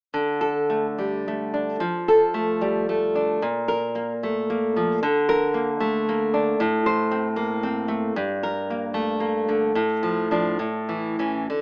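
A bright, full-bodied nylon-string guitar carries this short fragment of a romantic solo piece, fingerpicked up front with an audible finger squeak and a deep classical character. The mood is wistful and passionate, and the playing moves in a flexible rubato over a 2/4 metre at roughly 65 to 78 BPM. The harmony moves through a minor-key progression, from D5 and Dm/F to Bb5, Bb/D, Am and Gm, before settling on Dm/A and closing on A at 10.6 seconds. The guitar ranges from G2 up to C5 and plays alone across the whole clip, which ends at 11.6 seconds. A light reverb and small-room ambience frame the instrument, while the rough home-demo mix gives the sound an AM-radio tint.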